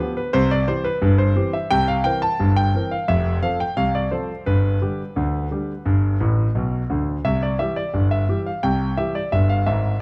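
A straight 2/4 pulse at 87 BPM drives this playful, lively ragtime piano passage in C major, cut from a longer piece. A solo concert grand carries everything, sounding clear and natural with a deep bass, placed up front by close, detailed microphones and touched by light reverb, spanning F1 to A5. The harmony moves through C, C7, F and G, and a brief piano fill from 6.2 to 7.2 seconds leads back to C.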